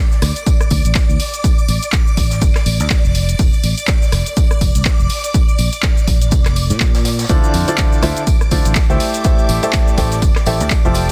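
Bittersweet and soulful, this piano house excerpt at 123 BPM with a 16th-note swing sets shimmering, slow-attack string-machine violins pumping against an up-front, tape-warm electronic kick, a round, dark fingered electric bass, a punchy analog drum machine's handclaps, hi-hat, rim click and shaker, a very quiet dry cocktail kit with high-tuned snare and a faint tambourine, before a clear, worn grand piano riff with delay enters at 7.3 seconds over Dm9 and Fmaj9 chords in a small room with a dense, heavily limited master.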